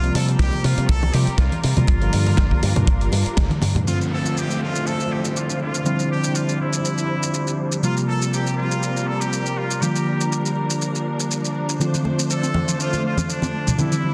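A dense, heavily limited modern master with a moderate plate reverb and a small room gives this sunny, groovy nu-disco cut its polished, close sheen, taken from a longer piece at 121 BPM in 4/4 with a light 16th-note swing, in F major. A tight, dry acoustic kick, gritty, overdriven sampler-style drums with hi-hat, shaker, snare and toms, bright soft-handed congas and a fingered electric bass through an envelope filter drive the opening, moving through C7sus4 and Gm7 before a drum fill and a band accent close the first section. The kick drops away at 3.5 s and the bass and congas at 3.8 s. A background electronic downlifter arrives at 3.9 s as a filter sweep begins on the lush, bowed studio string section, which holds sustained chords throughout through sidechain pumping. From the start, a worn, slightly out-of-tune tine electric piano with analog chorus and pumping carries the accompaniment, while a nasal, straight-muted trumpet section with tape echo plays a punchy, pop-style melody across all the changes. 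A very quiet detuned sawtooth unison pluck adds arpeggios from 11.8 s, and the congas return at 12.0 s.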